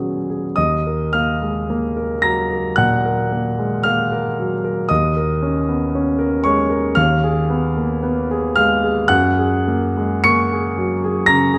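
A clear, natural, up-front concert grand piano opens this wistful, mysterious fragment of impressionist classical solo piano in Eb minor, drifting with rubato at 48-61 BPM in 4/4 and spanning Eb2 to Db7, its deep bass and long sustain carrying harmonies that move from Ebm7 and Ebmadd9 through Bbm7/Eb and Abm6/Eb to Gbadd9 at 9.1 seconds, all set in a moderate concert hall reverb.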